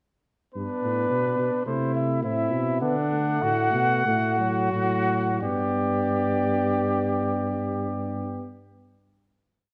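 A moderate recital hall reverb, lasting about 1.4 seconds, surrounds this short, complete classical piece, an imitative canzona for brass ensemble in G major that sounds joyful and lively. Its straight 4/4 pulse sits between 83 and 109 BPM and broadens steadily from 0.5 to 6.8 seconds. A dark-toned trumpet carries the melody in its upper range, while a second trumpet with a mellow colour plays the inner line up front; both trumpets show a smooth top and light vibrato. Beneath them a euphonium supplies mellow accompaniment, and a close-miked bass trombone with vibrato anchors the bass from 0.6 seconds, also placed up front. Each instrument plays its own line of imitative counterpoint through a brief exposition that moves from a rootless G through Am/C to D. At 5.4 seconds the ensemble arrives on a sustained G major final chord that rings into the hall.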